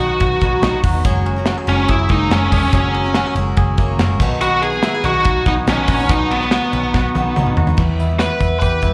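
Bright and youthful, this jangly indie pop clip moves at 143 BPM in straight 4/4 in B major, with an up-front, overdriven lead guitar carrying the melody through plate reverb and slapback echo, while a soft, bell-like glockenspiel with rubber mallets rings a second line in the background until 7.5 s. Beneath them, a full-bodied jumbo steel-string acoustic guitar is picked in the background, a clean, twangy direct-recorded electric guitar spins compressed arpeggios through spring and plate reverb, slapback echo and analog delay, and a round, punchy foam-muted bass anchors the low end. A tight, smooth studio drum kit with a rolled-off top enters at 0.2 s and plays a fill from 6.9 s into a shift to E minor at 7.8 s, all heard as a live gig through the venue's PA with light club reverb.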